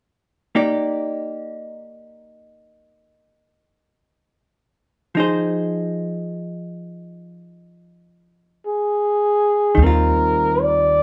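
Tender and romantic, this short fragment of a slow swing jazz ballad opens at 0.6 seconds with a vintage hollow-body electric guitar alone, its clean, picked chords dark, compressed and close to the ear. Over this gentle accompaniment the harmony moves from a major seventh chord to a minor seventh and finally settles on a sixth-ninth chord. At 8.7 seconds a breathy flugelhorn enters with the melody, its soft attack, scooped notes and light vibrato giving it a whispered, intimate quality set in a roomy space. A woody, thumpy upright bass with gut strings joins at 9.8 seconds, plucking a single low note beneath the final chord. The band plays together in one large studio with moderate reverb, and the overall sound is soft and rounded, with little sparkle in the highest frequencies.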